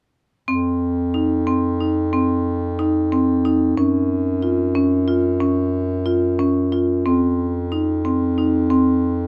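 A moderate studio ambience gives this short fragment of contemporary chamber music a close, lightly reverberant sound. In a straight 5/8 at 182 BPM counted in eighths, a warm, up-front marimba played with medium mallets spins arpeggios in the middle register while a mellow, roomy bass clarinet in classical style holds down the bass. The harmony shifts from F5 to Gb5 at 3.8 seconds and back to F5 at 7.1 seconds, leaving a restless, pensive mood.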